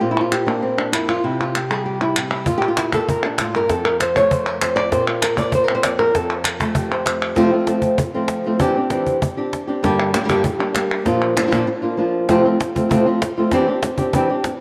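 A fingerpicked flamenco guitar opens this proud, festive passage from a longer piece, its up-front melody carrying audible finger squeak and a tape echo, while crisp palmas hand claps join almost at once. A snappy, close cajon struck with hard hands enters at 2.5 seconds, and the claps drop out at 7.4 seconds before returning briefly at 10.0 seconds, all of it set in a long, wet plate reverb. The guitar moves through bright suspended and added-ninth colourings over a brisk, straight four-beat pulse, with a short break near the end of the clip.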